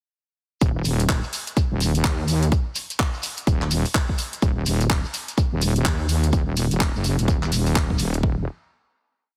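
Bouncy and gritty, this short bass house piece at 126 BPM in Eb minor, with a swung 16th feel, drops in at 0.6 seconds with a heavy, detuned sawtooth wobble bass carrying chorus, overdrive, sidechain pumping and changing wobble speed, a punchy four-on-the-floor electronic kick up front, handclaps and closed and open hi-hats from a tape-tinged house drum kit, and a grainy shekere playing hand-played sixteenths in the background, set in a heavily compressed, radio-like sound with little reverb, before a final note closes the piece at 9.4 seconds.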